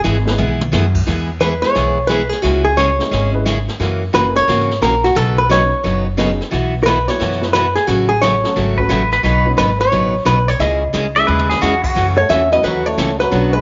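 A dark, clean hollow-body jazz guitar carries the melody up front from 1.4 s in this cheerful, playful western swing piece at 176 BPM in E major, over a full-bodied picked acoustic guitar, a woody, growly pizzicato upright bass, a mellow upright piano with audible action noise in the background and a brushed jazz kit with a boomy kick, while a twangy pedal steel with volume swells joins at 8.8 s and a nasal, straight-muted French horn takes the second line at 12.2 s, with moderate plate reverb and small room ambience around the band.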